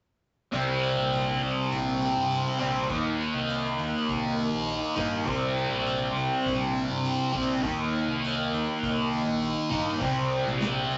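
A straight 4/4 pulse carries this dark, mysterious psychedelic rock fragment, where a bright, double-tracked fuzz guitar riff with distortion and phaser sits up front over C5 and Eb5 chords, while a growly overdriven fingered electric bass and a vintage acoustic drum kit with a punchy kick, a pumping small-room sound and rolled-off top stay in the background of a wet studio ambience.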